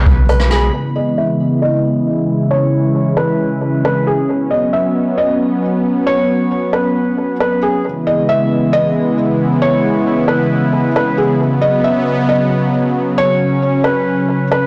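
A half-time 4/4 groove at 135 BPM opens this hazy, ethereal cloud-rap hip hop excerpt in C# minor, tuned slightly flat, with a distant, roomy jazz brush kit (boomy kick, hi-hat, rim click, soft-clipped snare), a deep, round 808-style bass and a warbling, lo-fi dusty pluck arpeggio in the background, all of which fall away by 0.7 seconds. Throughout, a smooth, detuned sawtooth analog pad with chorus, sidechain pumping and a low-pass filter holds sustained chords that alternate between C#m7 and Bsus2. Over it a muted, intimate felt upright piano carries the melody through filtering and digital delay, while a filter sweep runs from 0.7 to 7.8 seconds, all inside a blown-out, overdriven mix with light reverb.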